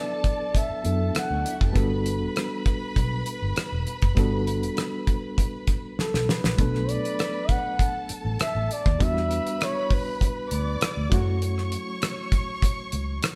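A moderate stone-room reverb frames this lush, romantic 1970s-style soul excerpt at 99 BPM, where a breathy, close-miked flugelhorn sings a mellow melody with scooped notes over a bowed, vibrato-rich violin section, a barky, lightly overdriven electric piano with fast tremolo, a dark, foam-muted fingered bass and a dry, up-front drum kit with a fat snare, all moving from D6/9 to Gmaj9 and then, after a drum fill at 6.0 seconds, through Bm7, Em9 and F#m7.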